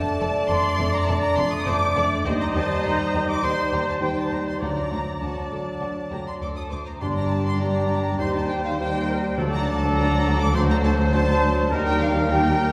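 Urgent and restless, this quick classical-period movement for symphony orchestra drives ahead at 102 BPM in a straight 4/4, a short passage cut from a longer piece and tuned a little below modern pitch. A lush, close violin section carries the melody high above the staff with smooth vibrato, while an airy flute ensemble with lifted highs traces a second line in the same register. A second, more focused violin section, a warm oboe and a very quiet, mellow clarinet add inner lines in the background. Violas and a warm bassoon fill in the accompaniment, mellow French horns hold sustained chords, and a dark trumpet section punctuates with stabs. From 0.2 seconds, cellos lead the bass as the most prominent part in the mix, together with a shadowy, expressive double bass section with soft attacks and portamento. Round timpani struck with soft mallets on calf heads enter at 4.6 seconds and drop out at 11.4, as the harmony moves from Dm/F through Cm/Eb, D and Gm to a D7 that gives way to Eb. 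The whole orchestra sits in a wet, reverberant hall with a 1.9-second decay.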